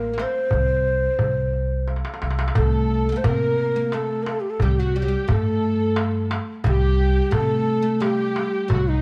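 In a straight 3/4 at 88 BPM, this soulful, melancholic Arabic maqam ensemble, tuned to A4 = 439 Hz, sets a breathy, mellow ney melody up front over a bright, plectrum-plucked fretless oud second line, a woody pizzicato upright bass and a crisp, vintage-toned metal-shell darbuka played with hard hands. After a darbuka fill from 1.9 to 2.6 seconds, a distant, lush studio violin section enters at 2.6 seconds with sul tasto bowing and vibrato, adding a soft second line beneath the ney. Light reverb gives the whole a dark, warm production.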